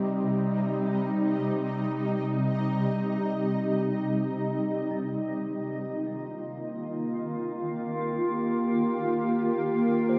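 Ambient music in free time with a weightless, luminous mood, tuned to A4 = 441 Hz. A shimmering, up-front pad sustains ethereal chords with an octave-up shimmer, detuned grainy texture and chorus, moving from Cm to Eb at 4.9 seconds, while a clean tine electric piano plays very quiet arpeggios far behind it in the mix. The dreamy mix is soaked in a plate reverb with a 2.9-second tail, and this brief fragment is cut from a longer piece.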